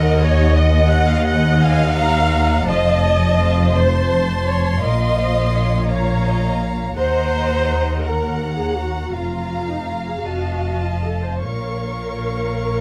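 An up-front double bass section with a smooth top anchors this slow, melancholic and solemn romantic movement for string orchestra in Bb minor, moving in a rubato 12/8 at 56 BPM, alongside a clear, even cello section on the bass line. Lush violas with portamento carry the accompaniment close to the listener, while one violin section sings the soft-attacked, expressive melody and a second, rich and focused, traces a higher line above it, every section bowed with vibrato. Close, detailed microphones and light reverb frame this 12.8-second cut from a longer piece, which moves through Ebm and F7 before arriving on Bbm.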